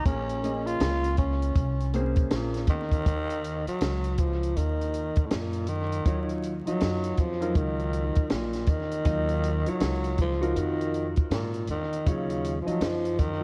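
A growling, breathy tenor saxophone with tape echo leads this mellow, cool jazz-hop excerpt, taking a solo from 0.0 to 3.1 seconds over a Bbm9 chord that shifts to Ebm9 at 3.1 seconds. A woody, thumpy pizzicato upright bass and a dark concert grand piano with audible action noise sit beneath it, while a dry cocktail drum kit with a high-tuned snare and tight kick sits up front with a swung 16th-note feel. The echo-heavy mix carries a small room ambience, light reverb and vinyl crackle.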